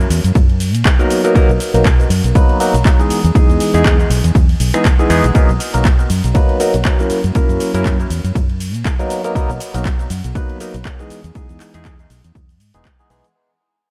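An echo-heavy mix with light reverb and digital ambience gives this short cut from a longer filtered disco house piece a roomy, glossy sheen, and it begins already at the drop before fading out from 5.4 seconds onward. At 120 BPM in 4/4 with a swung sixteenth-note feel in B major, the mood is funky and joyful. A fingered electric bass, direct and amped with a warm, foam-muted tone, pumps against the sidechain from the start, alongside a layered house drum kit of finger snaps, handclaps, hi-hat, ride cymbal and shaker, whose warm, tape-warm hats, percussion and cymbals also breathe with the pumping. A punchy analog electronic kick arrives up front at 0.4 seconds, and at 1.0 seconds a bright, barky tine electric piano joins through a combo amp, lightly overdriven and colored by phaser, analog delay and its own sidechain pumping. The harmony moves through Bmaj7, Emaj7 and F#7, giving the groove a lush, jazzy lift.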